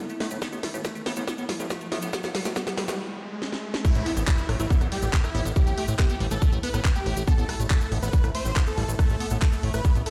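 Psychedelic and hypnotic, this psychedelic trance cut at 140 BPM builds for 3.8 seconds with drum fills and a background riser and downlifter over a fat, nasal analog bass, a squelchy phased acid riff, a mellow pulsing gated texture, a grainy distant egg shaker, cracking garage snare with bright hats and claps, and a tight up-front kick, then drops into a huge, airy compressed supersaw melody with vibrato while a very quiet juicy blip pluck flickers from 4.1 to 6.0 seconds, all ringing through a stone room's reverb on a big sound system.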